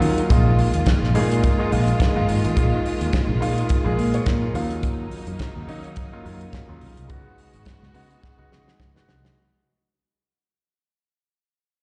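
Sultry and danceable, this short disco excerpt moves at 106 BPM in 4/4 with a light sixteenth-note swing, cut from a longer piece and fading out across its full length. A fingered electric bass sits up front, warm, direct and amped, while a damped 70s drum kit of hi-hat, tight kick and medium-tuned snare sounds dry and rolled-off on top. A grand piano carries the accompaniment with an intimate, natural tone, audible action noise, long sustain and a slapback echo. Behind them, a studio string section holds lush bowed chords with focused vibrato, placed distant in the mix. The harmony moves from Bb7sus4 to Ebm7 at 4.5 seconds and Db7sus4 at 7.1 seconds, and a drum fill arrives at 8.2 seconds. The sound is of a live gig heard through the venue's PA, with recital hall reverb and a top end capped at 10.6 kHz.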